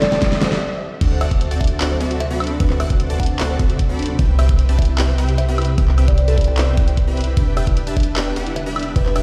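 Bittersweet and emotional, this future bass excerpt moves at 151 BPM in 4/4 with a half-time feel, tuned slightly low to A4 = 438 Hz. It opens on a brief build-up, where a very quiet riser and a drum fill give way to a short break at 0.6 seconds before the drop lands at 1.0 seconds, with chords moving from Am7 through D7 and Cmaj7 to Em7. A woody, dark kalimba carries the melody with dub echo, alongside a punchy, detuned supersaw stab riff whose filter sweep adds movement, while a soft, round pluck plays arpeggios with chorus in the background. A shimmering, ethereal pad enters at 0.6 seconds with evolving granular sustained chords, treated with chorus, phaser and its own reverb. The low end rests on an up-front, knocking electronic kick with overdrive and a deep, boomy 808-style bass with tube saturation, alongside a layered pop kit with a fat snare, hi-hat, handclaps, woodblock and crash. 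Sidechain pumping runs through the kalimba, pad, pluck, stab and bass, and the mix sits in a large studio reverb, as if played over a big sound system in a bare room.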